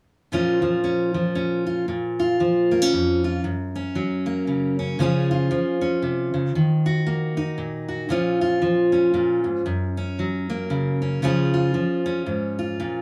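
In a lilting 3/4 at 116 BPM with a swung eighth-note feel, this short folk passage is cut from a longer piece. A single fingerpicked steel-string acoustic guitar plays solo in Bb minor from 0.3 to 13.0 seconds, ranging from F2 up to Ab4. Its jumbo body gives a bright, full-bodied tone, placed up front, with audible finger squeaks adding a close, human texture. After a brief opening phrase, the main passage begins at 1.9 seconds and cycles through Bbm, Gb, Db and Ebmadd9 before returning to Bbm, Gb and Db. The mood is wistful and haunting, and it sits in a moderate studio ambience that sounds like a live take in a single room.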